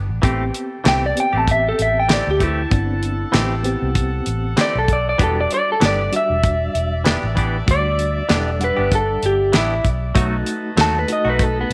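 A slightly broken-up, lo-fi electric guitar played through a small old amp carries the melody up front, entering at 0.9 seconds and standing out in this brooding, soulful soul blues clip, cut from a longer piece in E minor at 97 BPM with a straight-eighth feel. Beneath it, a dry, mid-forward 70s drum kit with a fat snare and tight kick sits close alongside a dark, round, foam-muted vintage bass that sounds from the very start. A reedy, worn electric piano, slightly out of tune and heard through its built-in speakers, adds accompaniment with a fast tremolo, while a clean, compressed guitar recorded direct cuts in with twangy, scooped stabs. A punchy horn section with light vibrato holds sustained chords from a distant, roomy position. The harmony moves from Am7 to Em7 and lands on B7 at 10.2 seconds, all set in light studio reverb.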